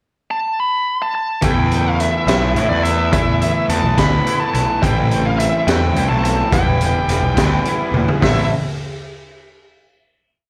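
Restless and cool, this short indie rock piece moves at 71 BPM in a straight 6/8, set in A minor and heard as a live gig through a club PA with light reverb. A biting, overdriven lead guitar opens alone on a pickup before the band arrives at 1.4 seconds, and it carries a motif-based melody up front, colored by plate reverb, slapback echo and analog delay. The band enters on an Esus4 chord for a pre-chorus that moves through Am7 and Em, with a bright, overdriven electric guitar ringing out chords and a clean, compressed, twangy guitar sitting in the background under ensemble chorus, slapback echo and delay. Up front, a fuzz-soaked picked bass drives a syncopated riff, while a raw garage drum kit with a high-tuned snare, punchy kick and gritty, rolled-off top holds a 6/8 groove. A drum fill at 7.9 seconds leads into a final Am7 chord.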